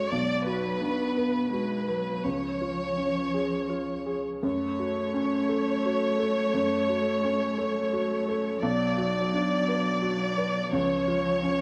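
This neoclassical excerpt for piano and strings opens with all three parts sounding together: a muted chamber violin section carrying the melody, a single muted cello on a second line, and a felt-muted upright piano supplying the accompaniment. The mood is melancholic and full of longing, moving at 86 BPM in 3/4 with a rubato feel in F# harmonic minor. The violins sit up front yet sound veiled and distant, their con sordino ensemble tone dark and touched with vibrato, while the cello is close and dark, one bowed player singing beneath them. The upright piano has a soft, intimate, vintage character, its thin felt giving a mellow, smooth glow from the bass up into the middle register. The harmony moves through Bm and C# before settling on F#m at 4.4 seconds, then returns to Bm and C# as the phrase repeats. A moderate recital hall reverb surrounds the ensemble, and the passage is cut from a longer piece.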